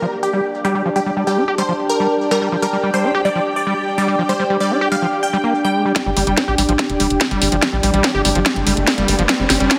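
A straight, hypnotic, intense feel carries this psychedelic trance excerpt, cut from a longer piece, with sidechain pumping breathing through the stab, drone, acid bass and pad. At the start, a punchy, detuned supersaw stab carries the melody up front through phaser and delay until 5.8 seconds, over a squelchy, gritty overdriven acid bass riff whose filter sweeps and distortion keep it forward in the mix. Beneath them, a wave-folded, chorused drone with moving overtones sustains chords while a cloudy, blurred granular pad adds an evolving texture. At 6.0 seconds the music launches into a build-up and drum fill as an overdriven, tight electronic kick and a garage kit with a cracking snare and filtered hats arrive up front, joined by a punchy sawtooth sequencer bass. An electronic riser enters in the background at 7.6 seconds. The whole track sits in a lush digital hall and has a heavily compressed, radio-like sound.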